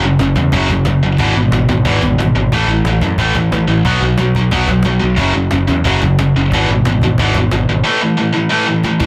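The recording is dry and dense, with a heavily limited modern master that keeps this short section of a longer punk rock piece pressed close and loud. Up front, a tight, double-tracked electric guitar plays a picked, distorted riff in its low register over a straight 4/4 pulse. A growling, overdriven bass, direct and amped with a bright edge, sits underneath and drops out at 7.8 seconds. Further back, a woody acoustic cajon with faint snares enters at 0.2 seconds, miked close, and closes the passage with a fill at 8.8 seconds. The chords cycle through F#5, E/G#, A5 and B5 before circling back, giving the passage a rowdy, upbeat drive.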